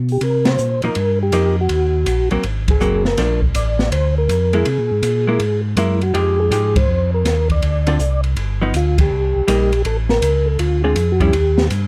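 A mellow, round tonewheel organ carries the bass line up front with light overdrive, chorus vibrato and slow rotary speaker, while a second, flute-like organ with percussive second-harmonic attack plays the melody, a clean, compressed hollow-body guitar comps from 0.8 s, and an open, dark-cymballed drum kit with a high-tuned snare and boomy kick swings beneath band accents in this smoky, soulful soul jazz organ trio fragment cut from a longer piece, recorded close and detailed with little reverb.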